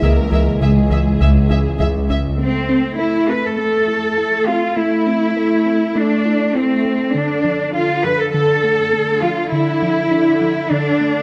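Vast and futuristic, this cinematic piece at 101 BPM in 4/4 opens on C#m with a vibrato violin melody over a focused second violin line, very quiet mellow French horns, trombones in the background, a deep, dark analog synth bass riff and smooth bowed double basses, all of which fall away by 2.3 s. From 2.4 s the music moves through Am and Dm, carried by the close, expressive violas, the up-front, lush cello section and the soft, round pluck arpeggio with chorus and delay sitting in the background, all three of which have played from the very start. A moderate scoring-stage reverb gives the strings and brass a spacious sound.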